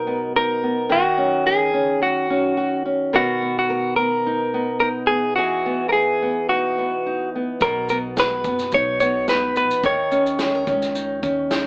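A lightly swung sixteenth-note feel in 4/4 carries this easy-going, sunny acoustic pop cut, where a clean, compressed electric guitar picks the up-front melody over a small, fingerpicked nylon-string guitar with fresh strings, moving through relaxed major-seventh harmony. At 7.6 seconds an upright bass enters, woody, dark and thumpy, alongside a natural country drum kit with a punchy kick, medium-tuned snare and shaker. The band sounds as if playing live in one room, with moderate studio reverb and an AM radio character.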